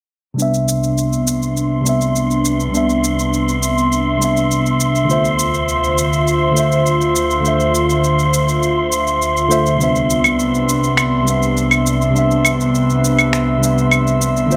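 Relaxed and smooth, this sunset chillout excerpt drifts between Cmaj7 and Dm7 as a worn, slightly out-of-tune tine electric piano heard through a combo amp carries a filter sweep and digital delay, a breathy, chorused pad of soft triangle and sawtooth tones with slow attacks and long release sits up front, layered electronic shaker, claves and finger snaps come through overdriven and close, and from 1.1 seconds a dark, wind-like tuned noise texture hovers high above, the whole mix set in a moderate plate reverb.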